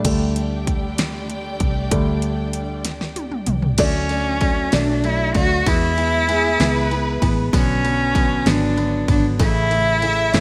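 A heartfelt, romantic six-eight pop ballad in a swaying 6/8, this excerpt carries a bright 1980s-style digital sheen with light reverb and a small-room ambience. A clear, open concert grand piano with deep low end leads the opening accompaniment, cushioned by smooth, focused studio strings holding sustained chords until 3.8 seconds, while a dark, round, foam-muted fingered electric bass anchors the low register. The electronic, layered pop drum kit sits up front with a punchy kick, fat snare and metallic hats, and a drum fill leads into the second section. At 3.8 seconds a single bowed cello takes the melody, nasal and boxy with warm vibrato, placed prominently in the mix. From 6.3 seconds a lush, distant violin section adds a soft-attacked second line above it as the harmony moves through D, E, Bm and A.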